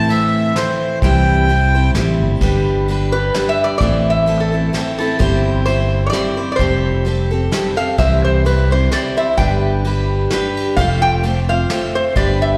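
A lilting 3/4 waltz at 129 BPM with a gentle swing carries this peaceful, nostalgic acoustic folk excerpt in G mixolydian, heard as a live gig through the venue's PA with recital hall reverb. A reedy accordion with slow beating voices the opening melody until 1.9 seconds, while a bright, full-bodied steel-string acoustic guitar with finger squeak, a round fingered electric bass, and a soft brush kit with dark cymbals hold the accompaniment, with slapback echo on the accordion and guitar. From 3.1 seconds a metallic, nasal resonator slide guitar played with fingerpicks and a steel bar takes a solo over chords moving through Am, C, G and Fadd9.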